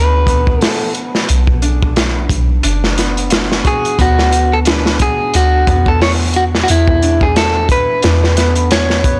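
A clean electric guitar, a concert harp and a soft 808-style bass open this melancholic, hypnotic trip hop excerpt together, in B dorian at 89 BPM with a gentle 16th-note swing. The picked, compressed guitar carries the melody up front, its tone trailed by dub echo. Beneath it the fingerpicked harp rings out arpeggios through a digital delay, while the deep, round, dark bass sits low with a fast attack and a decaying tail, treated with transformer saturation. At 0.3 seconds a crunchy breakbeat kit joins with hi-hat, a tight kick and a medium-tuned snare, sounding gritty and mid-forward with a rolled-off top. The harmony moves from Bm to D69 at 4.0 seconds and E5 at 6.7 seconds, and the whole recording is blown-out and overdriven, set in a light reverb.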